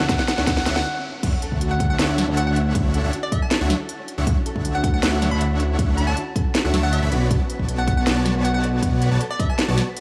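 Punchy, layered electronic kicks and a crisp trap kit with a sharp snare set up a half-time future bass groove in this bright, euphoric piece, opening with a brief build-up where a dark, mellow grand piano and a very quiet, ethereal pad sound only for an instant. A drum fill and riser lead into a short stop before the drop hits at 1.2 seconds with an electronic impact and sub drop, as huge, lush supersaw chords with digital delay and a fat, saturated analog bass up front both pump with the sidechain. A hollow, bouncy square-wave pluck carries the melody through chorus and delay, and from 1.3 seconds a ringing, fingerpicked Celtic harp adds soft arpeggios in a small room, while the Dmaj9 harmony moves to Bm7 at 7.1 seconds.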